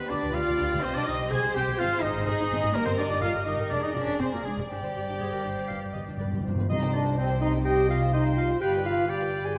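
Urgent and restless, this quick classical-period movement for symphony orchestra in C minor moves at 124 BPM in 4/4 with a rubato feel, its chamber violins carrying the melody with light vibrato and a soft, sul tasto touch while a bright, present oboe, a second violin line and a hollow, airy flute in the background weave supporting lines above a viola accompaniment. Distant, roomy French horns hold dark sustained chords over cellos and an up-front double bass section, and a clear clarinet joins at 5.2 seconds just before hard-mallet timpani play an articulate fill from 5.7 seconds. The cut from a longer piece sits in a wet scoring-stage reverb with a dark, warm production, and the harmony turns from Cm through Ab and a diminished chord to G before returning to Cm and closing on G7.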